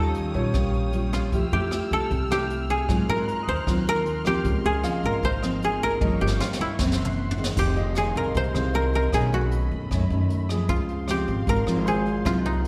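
Intimate and melancholic, this short bossa nova in F minor moves at 154 BPM in a straight 4/4, cut from a longer piece. A mellow koto, played with fingerpicks and sitting dry and up front, carries the melody, while a fingerpicked nylon-string guitar with a deep classical tone and audible finger squeak supplies accompaniment alongside a pizzicato upright bass whose gut strings give a woody, thumpy low end. A jazz kit played with brushes adds dark cymbals, a high-tuned snare, a boomy kick, rim clicks and toms, and it plays a fill from 6.0 to 7.6 seconds leading into the second section. Further back, a clear grand piano adds quiet accompaniment, and a dark, soft-attack string section holds bowed chords with light vibrato. The harmony drifts through rich extended chords such as Eb9, Dbmaj13 and Gb7#11 before the second section opens on Fm7, all placed in a moderate concert hall reverb.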